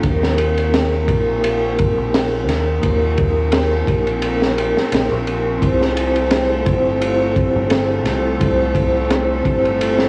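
A lightly swung sixteenth-note groove in 4/4 drives this dark, cinematic trip hop fragment, cut from a longer piece. A crunchy breakbeat kit sits up front, with a punchy kick, a high-tuned snare and dusky ride cymbals, its saturated, gritty sound rolled off at the top. Underneath, a deep dub fingered electric bass plays a round, low line, while a soft-mallet vibraphone carries the accompaniment with a ringing, airy, mellow tone, coloured by tremolo, a low-pass filter, tape echo and cassette grit. A very quiet, tense bowed-like drone hovers from 0.1 seconds, bright and string-like with phaser shimmer and built-in reverb. At 5.6 seconds the harmony moves from Eb to C as a string machine cello patch enters in the background with full, vintage, chorused sustained chords. Light reverb and small room ambience give the whole home cassette recording an intimate, hazy feel.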